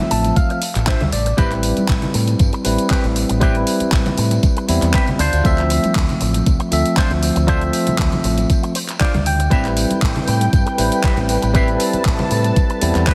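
A lightly reverberant, heavily compressed mix with a radio-like sheen frames this groovy, cosmic nu-disco excerpt, cut from a longer piece and riding a gently swung 4/4 pulse over a Dm7 to Am9 progression. A knocking, overdriven electronic kick sits up front, layered with a pop drum kit whose handclaps and warm hats share that grit, both carrying the character of a small room, while bright, vintage congas and tambourine stay in the background. A dark, round, punchy fingered bass with an envelope filter anchors the low end, and a clean, twangy picked guitar, also envelope-filtered, plays a riff touched with subtle chorus and dub echo, adding clean guitar fills at 0.0 and 8.5 seconds. A bell-like tine electric piano glows up front with low-pass filtering, sidechain pumping and dub echo in its accompaniment. At 9.5 seconds a lush, thick, warbling unison pad built from detuned sawtooth tones swells in with a slow attack, chorus and sidechain pumping to hold sustained chords through the close.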